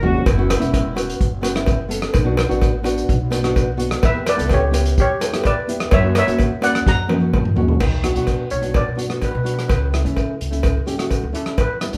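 Intense and dramatic, this calypso excerpt in B minor moves at 127 BPM in a straight 4/4, cut from a longer piece and played live by a band in one room with a moderate large studio reverb. A fingerpicked classical nylon-string guitar with finger squeak, a woody, thumpy pizzicato upright bass on gut strings, and a punchy, up-front acoustic drum kit played with bundle sticks, with a fat snare and dark cymbals, carry the groove through chords such as F#7sus4, Bm7, Em and F#7, while a small-room cowbell adds metallic color and a vintage horn section with light vibrato appears only briefly at the opening. A shimmering, airy steel pan struck with hard rubber sticks takes the lead from 4.0 seconds, then plays a solo from 7.8 seconds after a drum fill.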